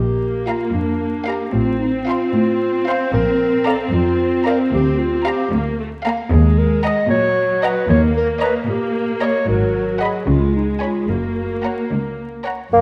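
The excerpt opens on a mellow clarinet line over bowed strings: a smooth, up-front viola section, a lush cello section and a dark, woody double bass section, all with vibrato. This is a playful, whimsical film cue with a magical air, moving at 75 BPM in a straight 6/8. At 0.5 s two violin sections join, one carrying a high melody with a soft attack that sits in the background and the other adding a focused, close second line. The harmony begins in Bb major and shifts to F# major from 6.3 s, passing through D#m, D#7 and G#m7 before settling on F#. A mellow solo bassoon sounds a single brief note at 12.7 s, just as the cue is cut off. The scoring-stage reverb is moderate, and a layer of vinyl crackle runs underneath.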